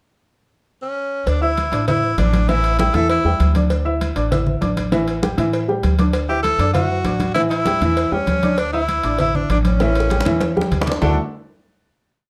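A lively, straight salsa groove takes hold at 1.3 seconds, after the clear tenor saxophone opens alone with a short pickup phrase. Congas with slaps and open strokes, played with hard hands and heard close and dry, sound alongside tight, high-tuned bongos in steady eighths and a hand bell, while a woody, thumpy upright bass plays a pizzicato tumbao that anticipates the chords. A mellow baby grand piano lays down a montuno in octaves, its short sustain and audible action noise giving it an intimate character. Up front and close-miked, the saxophone carries a festive, joyful, motif-based melody of call phrases with vibrato in a pop style, pausing for a stretch before returning. A drum fill leads into a final chord at 11.0 seconds, and the whole piece sits in a dark production with tape saturation and moderate studio reverb.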